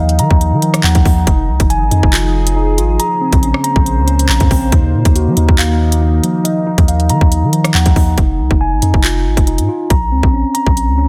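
A hard-clipped kick leads the up-front electronic drill kit of crisp hats, handclaps and rim clicks over a deep, decaying sine 808 bass, while a mellow tine electric piano plays arpeggios through a low-pass filter and digital delay and a glassy, chorused FM pad holds dark sustained chords until 8.1 s, giving this half-time hip hop excerpt a tense, ominous mood.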